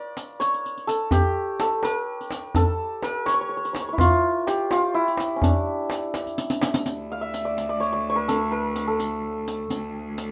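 Persian modal ensemble music in D avaz esfahan, moving at 84 BPM in a straight 6/8 with a longing, soulful mood, taken from a longer piece. A mellow, shimmering hammered santur carries the melody up front, joined by a close riq with dark jingles and, from 1.1 s, a tight, saturated tombak played with soft hands, and a drum fill arrives at 6.4 s. At 6.8 s a single bowed cello enters up front, holding a biting, intense drone on D2 with an airy bow and light vibrato, while a wet studio reverb lends the room a short ring.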